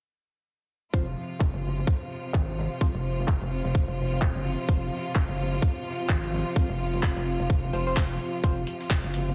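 Aggressive and swaggering, this bass house excerpt moves at 128 BPM in 4/4 with a 58% swing on the sixteenths, opening on an F5 chord. From 0.9 seconds a metallic, distorted FM wobble bass sits up front beside a tight, tape-warm electronic kick, while a bright bowed string section holds vibrato-laden sustained chords and a nasal, band-passed sawtooth stab with phaser and tape echo plucks in the background under a filter sweep; a warbling, lo-fi pad and layered electronic handclaps soon join. Sidechain pumping breathes through the strings, stab, pad and bass, the drums carry their own filter sweep within a light reverb, and at 8.4 seconds a gritty sampler-style kit adds hi-hat and snare.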